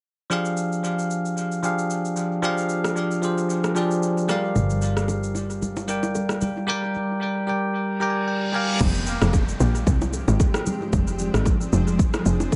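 A tight, punchy log drum bass drives the drop at 8.8 seconds in this deep, soulful amapiano excerpt at 113 BPM in F dorian, arriving after a bell-like tine electric piano with phaser and analog delay plays Fm69 and Gm7 chords over an overdriven, layered deep house kit of kick, rim click, shaker and crash, while a bowed double bass with vibrato and small-room congas and bongos join at 4.6 seconds, a reverse cymbal and downlifter sweep into the drop, and a blurred, detuned granular pad with sidechain pumping drifts in at 9.7 seconds to fill out a dry, echo-heavy mix.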